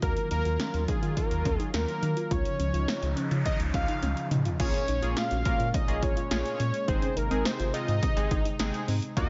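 A fat, nasal analog lead carries the melody up front from the first moment, its sawtooth tone thickened with chorus and a touch of vibrato, over a punchy analog drum machine whose kick and snare hit hard inside gated reverb. This is driving, cool synth-pop in a straight 4/4, cut from a longer piece, with a round, deep analog bass anchoring the low end and a slow-attack resonant pad sustaining evolving, full-bodied chords beneath. Tucked in the background, a soft pluck runs gentle arpeggios through chorus and digital delay. An electronic noise sweep enters at 2.8 seconds, the drums play a fill from 4.0 seconds, and at 4.6 seconds airy, warbling vintage keys join as accompaniment while the harmony moves from Ebmadd9 and Dbadd9 toward Bbm7 and Ab. The sound is dry and close, with the top end softly rolled off.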